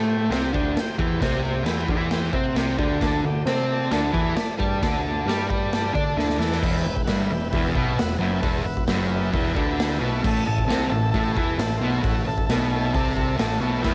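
Menacing and gritty, this garage rock cut from a longer piece drives in straight 4/4 as a fuzzed, double-tracked guitar riff sits up front alongside a growling, overdriven picked bass and a vintage combo organ holding buzzy sustained chords with light vibrato, the guitar and organ carrying a cassette-tape grain. A raw acoustic drum kit joins at 0.3 s, its punchy kick, medium-tuned snare, hi-hat and crash saturated and rolled-off in a bright, pumping stone room. A drum fill at 6.2 s pushes the music from its opening power chords into a new section starting on E minor, all caught as a home cassette recording with light reverb.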